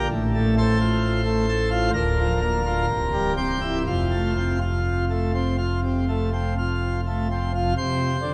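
A rubato 4/4 pulse moving at 60 to 66 BPM gives this classical, chorale-style passage in F major its unhurried, majestic and serene character. A solo pipe organ on a plenum registration carries the whole piece, its full, brilliant mixtures set up front in a baroque voicing that spans from C1 up to C5. The harmony steps from F/A through Bb/D and a C7 before settling on F at 3.9 seconds, and the organ falls silent at 8.3 seconds. A long, wet church reverb with a 3.8-second decay surrounds the instrument and lets each chord ring into the space. This short passage is cut from a longer work and tuned slightly high, to A4 = 441 Hz.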